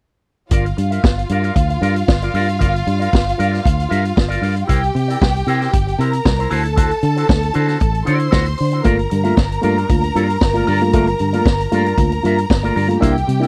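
A dry, close 1970s-style studio sound frames this sultry, danceable disco excerpt, where a punchy vintage drum kit with a high-tuned snare and a round, foam-muted fingered bass sit up front beneath lush bowed strings carrying a second line and a bright, twangy envelope-filtered guitar, before a reedy, lightly overdriven electric piano joins at 8.8 s.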